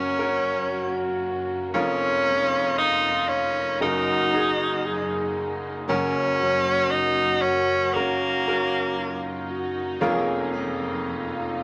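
Tender and emotional, this slow pop ballad moves at 58 BPM in 4/4 with a straight feel in F# major, and it is cut from a longer piece. An edgy tenor saxophone carries the melody up front in a forceful, jazz-style solo with vibrato, playing until 9.5 seconds. Beneath it, a mellow French horn section adds a tight, classical second line with light vibrato, while a bright upright piano supplies woody, polished accompaniment with long sustain across its full span. A lush symphonic string section holds bowed chords, and a picked jumbo steel-string acoustic guitar with fresh strings sits in the background playing full-bodied arpeggios. The harmony moves from F# through C#6/E# and D#m/F#, returns to F#, and then moves back to C#6/E#, all set in a moderate studio reverb.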